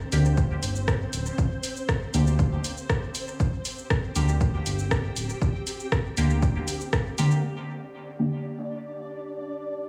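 A hazy, deep haze of light digital ambience surrounds this short dub techno excerpt, set in G minor at 119 BPM in a straight 4/4. Up front sits a soft, full-bodied chord stab on G minor, detuned and dark, dressed in chorus, phaser and dub echo and pumping against the beat, with a flickering, grainy granular texture shimmering above it. A round analog bass anchors the low end, while a punchy, tape-warm electronic kick drives from up front and an analog drum machine adds filtered hi-hat, rim click and shaker, re-recorded in a small room and trailed by dub echo. By 7.4 seconds the bass, kick and drum machine have all dropped out, and a filter sweep moves across the stab. At 8.8 seconds a faint, warbly pad with a nostalgic lo-fi tone slips in alongside it, lending the close a dreamy, sustained glow.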